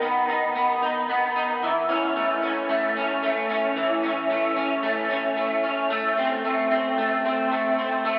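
In a straight 4/4 at 112 BPM, this brief dream pop excerpt in A lydian drifts with a floating, ethereal mood, built around a lone electric guitar played through a small old amp. The guitar sits up front, bright, twangy and slightly broken-up with a picked, lo-fi edge, its tone shimmering with ensemble chorus and tape echo. It moves from B to A at 1.6 seconds and settles on A minor at 5.9 seconds, all soaked in a huge, wet ambient reverb that makes the whole mix sound dreamlike.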